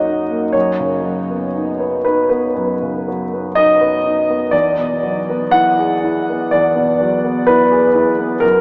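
Impressionist classical solo piano, hazy and serene, moves at a slow, rubato pace of roughly 58-64 BPM in 4/4, tuned slightly low to A4 = 438 Hz. A single concert grand carries the whole 8.6-second fragment, cut from a longer piece, reaching from E2 up to F#5 with a deep bass and long, natural sustain. The piano sits up front with an intimate, warm character, and its audible action noise adds a close, physical quality. The harmony drifts from F#6 at the start into Badd9/F# at 0.5 seconds, then settles onto E9 at 4.5 seconds. A huge, wet reverb with a 7.5-second decay places the sound in a vast, echoing space, though the overall tone has the narrow quality of a small speaker.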